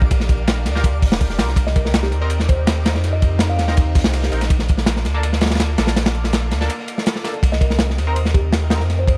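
A crunchy, saturated breakbeat kit sits up front, its tight kick, medium-tuned snare and dark cymbals driving this frenetic, atmospheric drum and bass cut from a longer piece, joined by a very quiet, overdriven sampler-style kit of hi-hat and snare until 7.4 seconds. Underneath, a round, deep sub bass holds the low end while a lush, detuned sawtooth pad with chorus, phaser and vintage sampler grit sustains chords in the background, and a nasal, band-passed chord stab decays into dub echo. A woody, hollow kalimba with grit and echo plucks short melody phrases from 1.7 seconds, over a faint, twinkling granular shimmer, all in a dark, small-room production.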